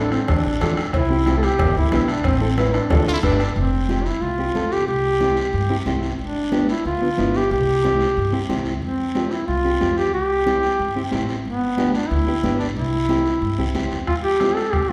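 A mellow, up-front duduk carries the folk-style melody over a joyful, danceable cumbia at 183 BPM in C major, joined by dark, clean fingered electric guitar, woody pizzicato upright bass, raspy close guiro, ringing distant congas, a vintage soft-beater bombo that drops out at 3.6 seconds and returns near the end, very quiet cowbell and timbales early on, and a brief gritty, growling trumpet line at 3.1 seconds, all bathed in the wet reverb of a recital hall in this excerpt cut from a longer piece.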